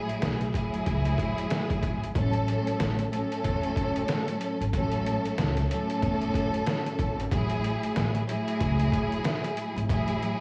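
Lush, bowed symphonic strings with expressive vibrato open this moody, tough boom-bap hip-hop excerpt through a filtered cassette-tape haze, soon joined by a gritty, pitched-down, compressed sampler-style drum kit with a thumpy kick and a medium-tuned snare and by a dark, woody pizzicato upright bass on gut strings, all over a swung groove and vinyl crackle, as the harmony moves from F#m7 to A6 at 2.2 seconds.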